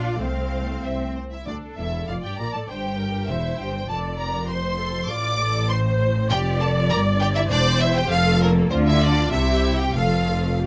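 A quick, urgent and dramatic classical-period string orchestra passage in F major at 99 BPM in 2/4, cut from a longer piece, where a clear, focused first violin melody rides up front over a second violin line set back in the mix, bright, intense violas, distant cellos and prominent double basses, all bowed with lush vibrato and captured with close, detailed microphones and light reverb, as the harmony moves through C/G, Amadd11 and Dm/F before settling on F at 10.0 seconds.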